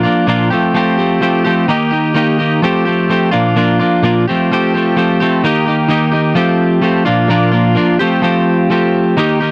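A straight 4/4 rock groove at 128 BPM carries this jangly, wistful fragment in F mixolydian, cut from a longer piece and tuned to A4 = 439 Hz. A solo twelve-string electric guitar, bright, clean and twangy with a compressed, up-front presence and a warbly pitch drift, picks through Bb, Fadd9 and Eb chords between Bb2 and G4, with a new section arriving at 6.4 seconds. The sound is a dry, close 1970s-style studio recording with light reverb.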